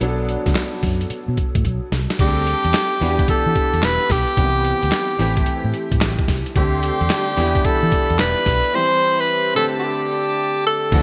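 A bright, 1980s-style digital production with light small-room ambience frames this slick, confident new jack swing excerpt at 110 BPM, where a gritty, pitched-down sampler drum kit with a thumpy kick, gated reverb and handclaps sits up front beside a dark, foam-muted electric bass and a smooth concert grand piano treated with ensemble chorus. After a drum fill at 1.6 seconds, a clear tenor saxophone with light vibrato takes the pop-style melody at 2.2 seconds over chords moving from D7sus4 through Em7 and Cmaj7. At 6.6 seconds a classical-style brass section adds sustained chords in the background.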